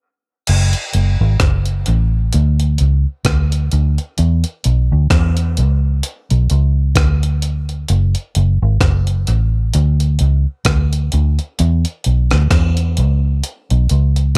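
A dark, round, foam-muted electric bass sits up front in this heavy, spacious dub reggae excerpt in F# minor, moving between F#1 and E2 at a slow 65 BPM with a swung 16th-note feel. It enters at 0.5 seconds alongside a gritty, compressed, pitched-up breakbeat kit of thumpy kick, hi-hat, rim click and crash cymbal, its sampler-style sound carrying a tape-like character and a small-room tone. The mix is dry, with both parts close and direct.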